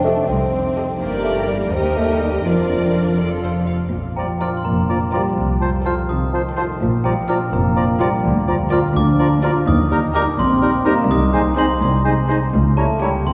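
A church-like reverb gives this short orchestral excerpt a hall-sized glow, as a playful, whimsical film cue in Bb major sways in 6/8 at 84 BPM. Very quiet, lush violin sections carry the melody and a second line over a mellow bassoon, smooth violas, ringing harp arpeggios, and a bowed cello and double bass foundation. At 4.2 seconds a sparkling, bell-like glockenspiel joins the melody, while a clear oboe, bright clarinet and pure flute add lines and a distant horn section holds sustained chords, lending the close a magical lift.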